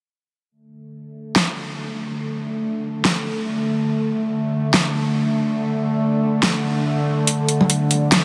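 Deep dubstep in D minor at 142 BPM, moving in a half-time feel with a swung sixteenth-note lilt, this meditative, dark excerpt is cut from a longer piece. A string-like, sawtooth drone enters at 1.2 seconds, holding sustained chords between D3 and A3; its detuned unison voices, noise layer, slow attack and long release sit up front, colored by vibrato, phaser and its own reverb, while a filter sweep moves across it throughout. The drum kit arrives at 1.4 seconds, an electronic, layered sound built from a huge snare and metallic hi-hats with a tape-warm sheen, also placed up front. At 7.6 seconds, bright, vintage-sounding acoustic congas slip in from the background, band-limited and trailed by dub echo. A huge ambient reverb with a 6.3-second tail surrounds the whole, and the master is dense and heavily limited in a modern style.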